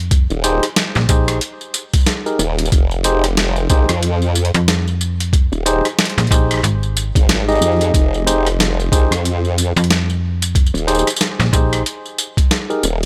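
A swung sixteenth-note groove in 4/4 drives this swaggering, funky glitch hop excerpt, anchored by a thumpy electronic kick sitting loud and up front beside a gritty boom bap sampler-style kit of hi-hat, rim click, medium-tuned snare and tambourine, both re-recorded in a large room. Two basses share the low end from the opening seconds: a snappy, metallic slap-like FM bass with tube saturation that drops out at 11.8 s, and a detuned, wobbling formant-sweep wobble bass blending sawtooth and sine tones under chorus and saturation. Above them, clean tine electric piano stabs on a single Fm7 chord pump with sidechain and trail digital delay, the mix framed by a digital ambience.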